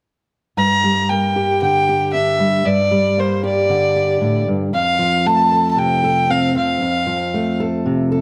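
Folk excerpt with an uplifting, hopeful mood in a straight 4/4, where a single bowed fiddle, dark and woody with light vibrato and a smooth top, carries the melody up front over a fingerpicked steel-string acoustic guitar of auditorium body and shadowed tone, both sitting in a large studio reverb as the harmony moves from Gm to F at 4.7 seconds.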